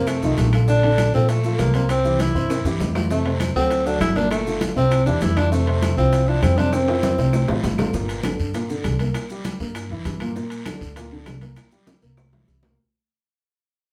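At a brisk 198 BPM in straight 4/4, this sunny, danceable Afro-Cuban jazz in F major rides on a full hand-percussion section. Ringing metal-shell timbales sit close, with bright, thin-skinned congas, quiet round low-tuned bongos, woody claves, a raspy guiro and grainy, distant maracas filling in behind. An up-front pizzicato upright bass with a thumpy, steel-string tone anchors the low end, while a dark, mellow upright piano comps underneath. A breathy tenor saxophone takes the solo melody up front in a jazz style, with light vibrato, scooped notes and a smooth top, and drops out at 7.6 seconds. Drum fills mark the phrase ends, and from 7.9 seconds the harmony moves through Gm, Edim, Bbadd9 and C7 as the music fades out, heard from further back in a studio with a short, wet reverb, in a passage cut from a longer piece.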